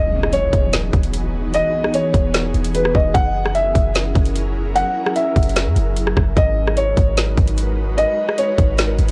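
A soft, felt-muted upright piano carries the melody in this hazy, spacious cloud-rap excerpt, its boxy, intimate tone flecked with audible action noise and trailed by analog delay. Beneath it, an ethereal, airy pad holds sustained chords from 0.1 seconds, its detuned unison voices thickened by ensemble chorus and built-in reverb, with sidechain pumping. A clean, deep 808-style bass with a fast attack and a dark, boomy decay sits up front beside a trap drum kit that enters at 0.2 seconds with a hard-clipped kick, woody snare, rim click and metallic hi-hats, driving a half-time hip hop feel. An electronic impact sounds in the background for the opening 1.5 seconds. The harmony moves from Emaj7 to F#7 to G#m7, and the dry, gritty recording carries lossy compression artefacts.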